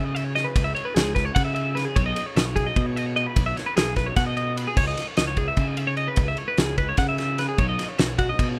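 Math rock and midwest emo in 7/8, bright and intricate, built on bright, compressed twelve-string electric guitar arpeggios that sit up front over an overdriven fuzz bass, moving through C#m7, B69 and Badd9 chords. A loose indie drum kit with a fat snare, tight kick and dark crash and ride cymbals enters at 0.2 s, while a very quiet twangy electric guitar is heard only in the opening 0.6 s. The rough home-demo mix carries a small room reverb, and the passage is cut from a longer piece.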